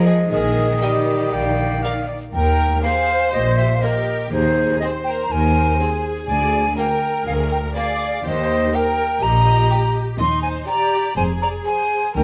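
A hollow, up-front concert flute carries a second line through this playful, whimsical cinematic cue in Eb major at 122 BPM, above an expressive violin section melody entering at 0.8 s, a soft-attack background violin section, a lush viola section, and bowed cello and double bass sections in the bass, while a mellow clarinet, a distant, roomy bassoon, a vintage cor anglais and a dark, very quiet French horn section colour only the opening seconds, set in a moderate recital hall reverb.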